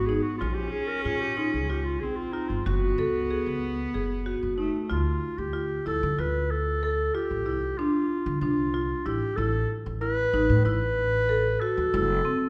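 An up-front, punchy clarinet carries a pensive, urgent melody in 7/8 at 187 BPM, joined by a reedy, bowed gut-string cello that drops out at 4.9 seconds, thumpy pizzicato upright bass, and woody marimba arpeggios with a boxy, percussive edge, all set in a recital hall reverb in this contemporary chamber excerpt cut from a longer piece.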